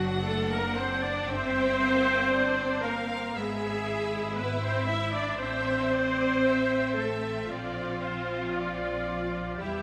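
At a slow 58 BPM in 4/4, this elegiac, melancholic excerpt from a romantic movement for string orchestra breathes with a flexible rubato, its harmony moving from D7/F# through Gm, E7/G# and Am to Bb. A focused violin section carries the melody with vibrato while a second violin line sits distant in the background and the violas, smooth and up front, fill out the accompaniment. Even-toned cellos and clear double basses anchor the bass, the whole lush ensemble set in the wet reverb of a scoring stage.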